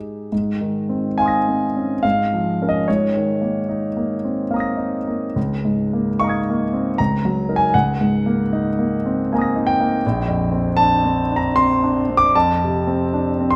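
Bathed in the wet reverb of a recital hall, this dreamy, serene impressionist solo piano excerpt presents a concert grand that sounds clear, intimate and up front, with deep bass, long sustain, a polished tone and audible action noise, moving in rubato 3/4 between 60 and 83 BPM in Ab mixolydian through chords such as Ab69, Db69 and Bb69 before reaching F6 at 12.3 seconds.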